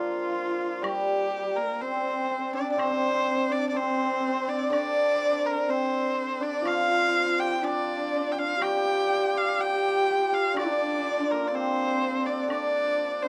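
A nasal, earthy erhu sings the wistful, graceful melody up front with light vibrato and portamento in this slow Chinese traditional chamber piece at 62 BPM in 2/4 and G yu mode, while a shimmering hammered dulcimer and a husky horsehead fiddle carry second lines, a second ringing dulcimer accompanies in the background, and a woodblock joins quietly at 0.8 s, all in a moderate booth ambience and cut from a longer piece.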